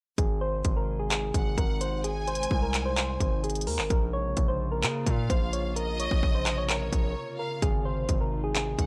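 Hip hop in a trap style, this dark, hard-hitting piece moves at 129 BPM in 4/4 with a half-time feel and is cut from a longer piece. Up front, a trap drum kit of hard-clipped kick, crisp hi-hats, handclaps and rim clicks drives things alongside a distorted 808-style bass that sounds heavy, saturated and aggressive, its sine tone carrying a layer of noise. Above them, soft electric-piano-like synth keys carry a round, mellow melody through chorus, a low-pass filter and analog delay, while a glassy FM pad sustains ethereal, warbling chords in the background with ensemble chorus and its own reverb. A bright violin section enters at 1.3 s with a lush, distant second line, bowed with vibrato and touched by analog delay. The harmony moves from Ab to Bbm and back to Ab after a short break at 7.2 s, all set in digital ambience with a dry, gritty hardware and cassette-tape character.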